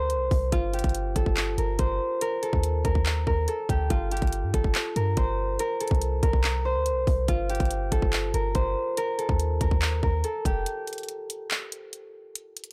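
A half-time trap groove at 142 BPM in 4/4 drives this menacing, hard-hitting hip hop excerpt in G minor, with a hard-clipped kick, handclaps and bright hi-hats from an up-front trap kit re-recorded in a small room. A deep, boomy 808-style bass with a noise layer and fast, decaying attack underpins a ringing, fingerpicked concert harp melody that moves through lush chords like Gm11 and Ebmaj7#11. The bass drops out at 10.7 seconds for a short break, and the whole mix has a dry, gritty hardware character with transformer saturation.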